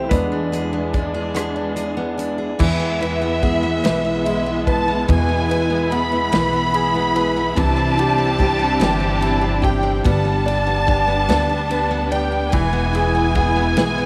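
This six-eight pop ballad moves at a slow 48 beats per minute, and its mood is melancholic and dramatic. A clear, polished baby grand piano carries the accompaniment alongside a full-bodied, picked steel-string acoustic guitar playing arpeggios, while a lush studio string section holds sustained chords with vibrato and portamento. Underneath, a woody, thumpy pizzicato upright bass holds down the low end, and a natural country drum kit with a punchy kick, medium-tuned snare, hi-hat, rim click, ride and crash cymbals keeps time. At 2.6 seconds a symphonic violin section enters high up with a smooth, even second line, placed up front and the loudest part of the mix. The harmony moves from E7 to E, then through Cadd9 and G before settling back on E. Light reverb and a small room ambience give the whole band a close, intimate space in this excerpt from a longer piece.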